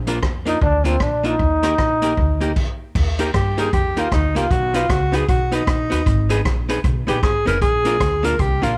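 Ska, upbeat and bouncy at 154 BPM in Eb major with a swung feel: a woody pizzicato upright bass, a clean hollow-body archtop guitar and a swinging big-band kit with a boomy kick and tape echo set the groove in a roomy studio. A vintage-toned trombone carries the melody from 0.5 seconds until a brief stop at 2.6 seconds. A breathy, intimate alto saxophone with light vibrato then takes a solo from 3.4 seconds to the end of this cut from a longer piece.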